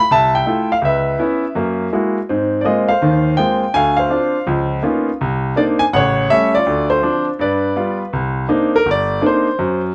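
A clear, natural, up-front grand piano opens this moody, late-night solo jazz excerpt at a brisk 164 BPM swing, ranging from G1 to A5 through restless chords like Fmaj7, Dbm7, F#9 and Cm9 before turning to a solo passage at 8.1 seconds, all set in a moderate club reverb.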